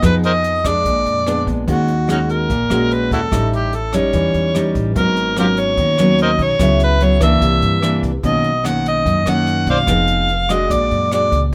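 Wistful and smooth, this bossa nova fragment in Eb minor moves at 146 BPM in a straight 4/4, cut from a longer piece. An overdriven harmonica carries the melody up front as a jazz-style solo, its gritty, amplified tone shaded with light vibrato, scooped notes and tongue slaps. Beside it, a fingerpicked nylon-string guitar with a deep classical character supplies the accompaniment, also placed up front. A pizzicato upright bass with steel strings adds a woody low end, while a jazz brush drum kit sits quietly behind, its brushes, hi-hat and rim click over a boomy kick in a studio room. The harmony travels through rich jazz chords such as Ebm7, A7#11, Abm11 and Bmaj9, turning back toward Fm7b5 at 9.9 seconds and Bb7alt at 10.7 seconds, all within a light reverb.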